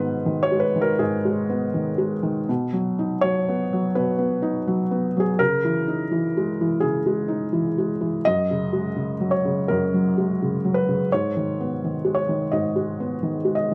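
Closely miked with fine detail and a light reverb, this hopeful, intimate excerpt of neoclassical minimalist piano features a soft, mellow felt-muted upright piano playing solo and up front in a rubato 4/4, its short-sustaining notes moving through G#m, B, C#madd9 and F#add9 before returning to G#m by 11.1 seconds.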